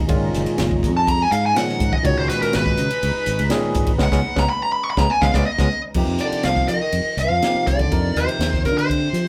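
A live, one-room studio sound with moderate reverb frames this intense, driving electric jazz fusion excerpt in straight 4/4, cut from a longer piece. A soft, chorused analog pad in the background and a barky, clean tine electric piano hold suspended chords under a punchy fingered bass and a crisp acoustic kit with a high-tuned snare. Up front, a dark, overdriven lead guitar solos from 1.0 s, with a band accent and a drum fill near the end of the first section. At 6.0 s the harmony moves into a new section, and a veiled, breathy cup-muted trombone enters at 6.2 s with a soft second line.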